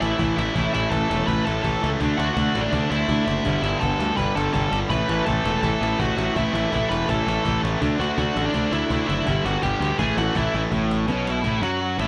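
Opening at once on a smooth, dark overdriven lead guitar melody up front over a growly, punchy fuzz bass, this rowdy, energetic punk rock excerpt drives through A5, D and G chords with a bright distorted rhythm guitar, a crunchy guitar in the background, a very quiet double-tracked raw garage guitar and a woody, distant cajon with faint snares that plays a fill at 10.5 seconds before the music shifts to a new section at 10.7 seconds in a dry sound.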